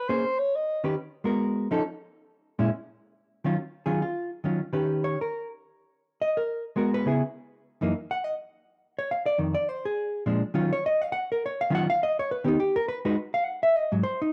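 A clean, picked hollow-body electric guitar carries this swinging, smoky jazz excerpt, comping up front from 0.1 s to the close at 14.3 s through rich minor ninth chords, altered dominants and a few open breaks where the harmony drops out. At the very start, a dusky alto saxophone sounds a brief subtone phrase of scooped notes in jazz style, heard alone for a moment and gone by 0.8 s. The horn sits up front yet feels distant and roomy, while the guitar keeps a shadowy, rounded tone. Both parts carry the soft grain of cassette tape, and a moderate studio reverb adds some space around the home-recorded sound. After the opening passage, a new section settles in at 3.6 s, with the guitar moving through a progression in E-flat minor at a lively, loping swing.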